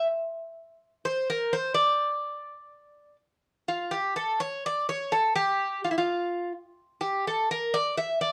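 A solo Greek bouzouki carries this short excerpt of Greek folk music. Its picked double strings ring metallic and warm, with some strings doubled at the octave, and it sits up front in the mix. The tune moves in an asymmetric 7/8 metre at 251 BPM counted in eighths, with a straight feel, staying between E4 and E5. After an opening passage, the music settles into D harmonic minor at 3.5 s, and the mood throughout is tense and intense. A moderate studio reverb and a dark production frame the instrument until it stops at 8.3 s.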